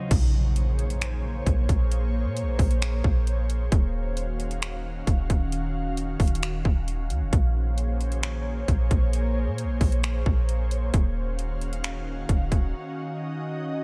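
An ethereal, airy pad opens the excerpt alongside a very quiet electronic swell and impact, its detuned sawtooth and triangle voices softened by ensemble chorus and built-in reverb as it holds sustained chords through the whole 13.8 seconds. This melancholic cloud-rap hip hop moves at 133 BPM in a half-time feel in Eb dorian, with a soft, round 808-style bass and an up-front trap kit of hard-clipped kick, metallic hats, finger snaps and crash cymbal, all tape-tinged and electronic. The chords alternate between Bbm9 and Ebm9, and the drums and bass drop out around 12.7 seconds, leaving the pad alone for a brief break in an otherwise dry mix.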